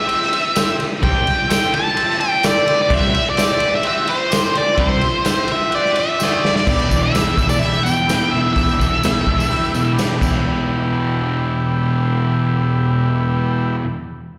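A straight 4/4 pulse at 127 BPM drives this menacing, swaggering garage rock cut in E minor, taken from a longer piece and heard as a live gig through the venue's PA, with recital hall reverb and small room ambience. The raw acoustic drum kit sits up front with a punchy kick, a medium-tuned snare, hi-hat, ride and crash, its sound saturated and gritty with a rolled-off top. A drum fill leads into the change at 6.7 seconds, where the harmony moves from C to E minor. A double-tracked, picked fuzz guitar riff enters at 1.0 seconds and holds the low end, while a dark octave-fuzz lead guitar carries the melody from the opening until 9.9 seconds; both guitars share distortion and slapback echo. Behind them a vintage combo organ holds buzzy, overdriven chords with light vibrato, and a jingly tambourine sits in the background.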